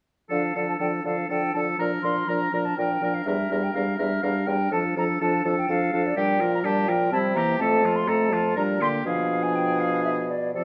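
In a straight 3/4 at 123 BPM, this quick, dramatic classical-period movement for wind quintet in D minor presses forward with urgency. From 0.3 s a pure, crisp-attacked flute with vibrato carries the melody over a clear oboe second line with light vibrato, while a mellow clarinet and a warm, close-sounding French horn fill the accompaniment and a distant, roomy bassoon anchors the bass. The moderate recital hall reverb surrounds a harmonic path that moves from Dm through Em7b5 and C7 to F before ending on a tense Bdim7 at 9.1 s, as this excerpt is cut from a longer piece.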